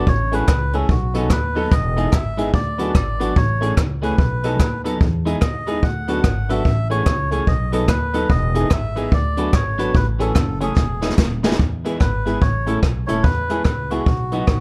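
A reedy, breathy melodica carries the melody from the very start of this bouncy, joyful ska piece, joined at once by a bright, twangy clean electric guitar whose picked accompaniment is coloured by dub echo and plate reverb. At a swung 146 BPM in 4/4 and in E major, a woody pizzicato upright bass and a jazz brush drum kit, with its boomy kick, rolled-off top and roomy small-room sound, settle in just after, the drums sitting up front in the mix. A clear, polished upright piano adds stabs that share the guitar's dub echo and plate reverb, while a very quiet, crisp group handclap sits low underneath until 11.3 seconds. The opening section cycles through jazzy major-seventh, dominant and sixth chords before a drum fill at 10.8 seconds leads into a brief closing section built on plain major chords. Light reverb and a dark, warm production give this fragment of a longer piece a soft, rounded sheen.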